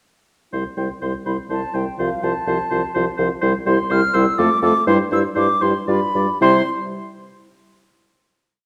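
A wet recital-hall reverb surrounds this brief, complete classical-period piece for wind quintet in C major, a graceful and cheerful movement in 3/4 taken at a quick 110-127 BPM with rubato. From 0.8 s, the airy silver concert flute carries the expressive melody with vibrato and a soft attack. Beneath it, a warm, distant oboe plays the second line, while a present clarinet and a close-miked, mellow French horn supply repeated notes and sustained chords, and a dark, up-front bassoon anchors the bass as the harmony moves from C through F/C, Dm/F and G7 to a final C chord at 6.4 s.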